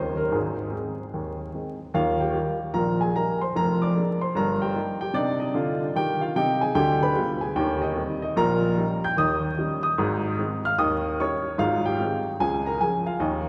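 A lush church reverb and vinyl crackle frame this swinging, exuberant stride piano excerpt at 149 BPM in 4/4, where a woody, polished upright piano plays alone and up front from 0.0 to 13.5 seconds, spanning F1 to G6 and moving from E-flat major to A-flat major at 8.4 seconds.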